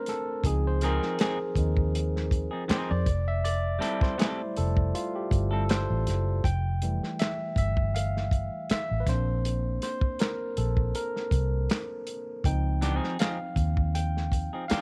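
R&B and neo-soul with a sensual feel and a light sixteenth-note swing, led by a barky, lightly overdriven tine electric piano that carries the lead from the start over a dry, muffled soul drum kit with handclaps, a round, foam-muted fingered bass and a dark, clean semi-hollow guitar that plays a second line until 5.6 seconds and returns at 12.8, all in a small room as lush chords shift from Dbmaj9 to Fmaj9 and Bbadd9 in this excerpt from a longer piece.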